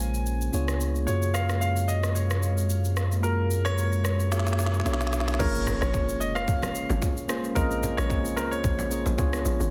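A dense, heavily limited modern mix with light digital ambience frames this late-night, soulful amapiano fragment. A concert grand piano carries the melody through tape echo over a mellow tine electric piano and a dark, detuned sawtooth pad, which sits in the background with chorus, built-in reverb and sidechain pumping. A punchy sine sub bass with a pitch-drop attack and an electronic kit with a tight kick and woody snare drive the groove into a drum fill at 4.3 seconds. At 5.4 seconds a hollow, bouncy log drum bass takes over from the sub bass, joined by a background impact and very quiet, bright vintage congas and bongos.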